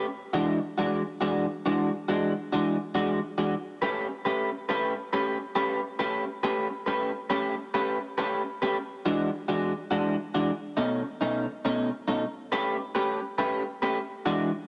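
A swung 4/4 feel at 138 BPM drives this laid-back, rollicking blues, where a lone electric guitar through a small old amp, bright, twangy and slightly broken-up with analog chorus, sits up front and picks across a range of B2 to B4 over E9, A9 and B9 chords in a moderate plate reverb for about 14.5 seconds of a longer piece.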